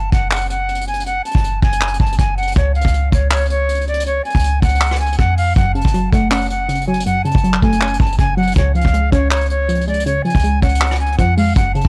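A half-time trap groove at 160 BPM in 4/4 drives this dark, menacing hip hop excerpt in F# harmonic minor, with a vintage brush drum kit up front from 0.1 seconds, its tight kick, hi-hat, rim click and handclaps sounding acoustic and mid-forward with a rolled-off top. Underneath, a clean 808-style bass booms deep and sine-pure, each note striking fast and then decaying in a dark low register. Over the top, a silver concert flute carries the melody with an airy, warm tone, soft attack and vibrato, its line trailed by tape echo. At 5.6 seconds a warbly, dusty pluck joins as accompaniment, a detuned, wave-folded tone with a filter sweep and chorus that keeps it wobbling and evolving. The harmony moves between F#m and C#, and the whole piece sits in a small, dry room with a gritty, cassette-worn character.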